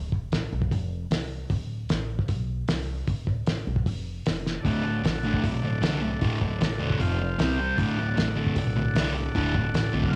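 A woody, thumpy upright bass and a cloth-damped, muffled drum kit with a fat snare open this raw, rowdy garage rock excerpt in D mixolydian at 153 BPM, and after a drum fill at 4.4 seconds a thick, double-tracked fuzz guitar riff and a buzzy vintage combo organ holding sustained chords both enter at 4.6 seconds, all heard through the gritty, lo-fi haze of a small-room home cassette recording with light reverb.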